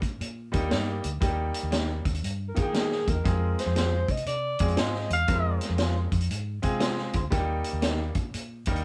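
Uptempo 1960s-style soul with an urgent, passionate drive, cut from a longer piece, moving in a swung 4/4 over a chord movement from Eb to F minor and back to Eb. A vintage drum kit sits up front from the start, its high-tuned snare, tight kick and hi-hat carrying a rolled-off top in a studio-room sound, while a foam-muted fingered electric bass adds a round, punchy, amped low end. A brilliant grand piano comes in at 0.5 seconds with accompaniment, and an electric guitar through a small old amp soon adds slightly broken-up, compressed picked stabs in the background. At 2.5 seconds a dark alto saxophone takes the solo melody up front, its subtone, vibrato and scooped notes giving a smooth, jazz-style voice until 5.6 seconds. The band plays live in one room, wrapped in moderate studio reverb.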